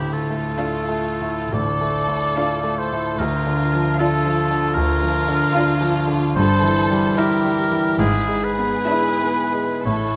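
In a rubato 4/4, this brooding, tragic classical fragment sets a brilliant, up-front concert grand piano on the melody over a lush bowed violin section and a soft-attack solo oboe carrying second lines, with cello and double bass sections holding a rich, smooth bass in the background, while from 0.6 to 9.6 seconds a very quiet, close violin section adds a high vibrato melody above a background viola section's even accompaniment, all placed in a moderate concert hall reverb.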